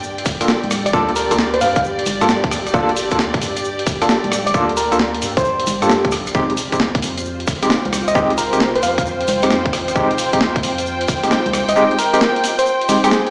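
A skippy, bouncy two-step UK garage groove runs at 133 BPM in 4/4, its sixteenths swung at 67%, with a tight, layered electronic kick up front alongside a gritty, tape-warm breakbeat kit of congas, hi-hat, rim click and a medium-tuned snare that sounds re-recorded in a small room. A soft, round dub sub bass sits deep beneath, while a grainy tube shaker ticks away in the background. Dark, woody studio strings hold a bowed ensemble texture with light vibrato, pumping against the sidechain. A barky, overdriven tine electric piano played through a combo amp throws out stabs with fast tremolo and digital delay, and a gentle, keys-like FM synth lead carries the melody with chorus, vibrato, cassette-tape colour and its own delay. In F dorian, the harmony moves from Gm7 to Fm7 at 6.3 seconds, and the whole cut from a longer piece is bathed in a lush hall reverb, sounding as if played on a big sound system in a bare room, with a small-speaker character.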